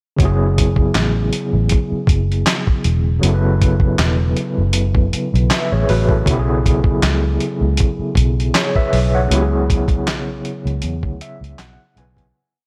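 A dusty, sampler-style drum kit, a muted fingered electric bass and an overdriven tine electric piano all start together at 0.2 s, setting a sultry, soulful R&B and neo-soul groove at 79 BPM with a gentle swing. The drums sit up front with a thumpy kick, snare layered with handclap, hi-hat and ghost notes, all compressed and tape-warm. Beneath them the dark, round bass plays a laid-back line with muted ghost notes, while the bright, barky piano, pulsing with tremolo through a combo amp, holds quartal chords over F#m7, Bsus24 and C#m7 and adds grace notes and a short fill at 10.8 s as the piece fades out from 9.3 s under light digital ambience.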